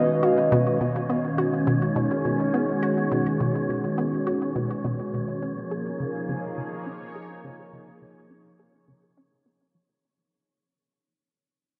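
A steady, straight 4/4 pulse at 104 BPM drives this cosmic, hypnotic stretch of ambient, sequencer-driven space music, cut from a longer piece. A resonant blip pluck carries the riff up front, its squelchy, detuned tone treated with chorus and delay, while a sweeping resonant pad holds sustained chords with an evolving, slow-attack swell. A soft octave-layered synth lead appears only briefly at the very start, a round, dark line with sub-octave weight, vibrato, phaser and delay. Beneath them, a wind-like tuned noise texture adds an airy, breathy haze with its own built-in reverb and lush chorus. From 0.8 seconds a filter sweep moves across the arpeggiated synth sound as the music fades out, and the chords shift from B6 to C# at 5.4 seconds. The dreamy mix is soaked in a huge ambient reverb, with some lossy compression artefacts audible.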